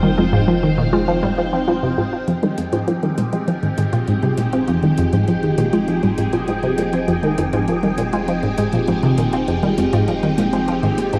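A juicy, squelchy resonant blip pluck sits up front in this hypnotic, expansive stretch of sequencer-driven space music, playing a riff through phaser and tape echo at 100 BPM in F minor, cut from a longer piece. Behind it, a lush unison pluck spins arpeggios in the background with its own tape echo, while a swirling, vintage string machine holds sustained chords on Fm7, bright and warbling under ensemble chorus and phaser. Deep under the pile, a round analog bass holds F1, and a breathy, wind-like tuned noise texture hovers on G5 inside its own built-in reverb. At 2.3 seconds a booming analog drum machine enters with metallic hats and toms, re-recorded in a large room and touched with tape echo, as the bass fades in through the rest of the passage. A moderate plate reverb lends the mix a spacious, drifting sheen.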